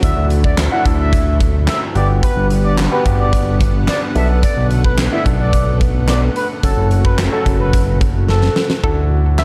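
Euphoric and carefree, this dance-pop excerpt moves at 109 BPM in D major through Dadd9, Gmaj7, Bm7 and F#m, with a smooth synth lead singing the melody with vibrato over clear baby grand piano accompaniment and a lush, bright unison pad set in the background. A detuned analog bass with a filter sweep sits up front alongside a huge arena drum kit of punchy kick, fat snare, hi-hat and handclaps, which plays a fill from 8.3 to 8.8 seconds, while the piano, pad and bass pump with sidechain. At 8.8 seconds a hollow, nasal square pluck with chorus and digital delay takes over the melody, and the production has a dark, small-room ambience.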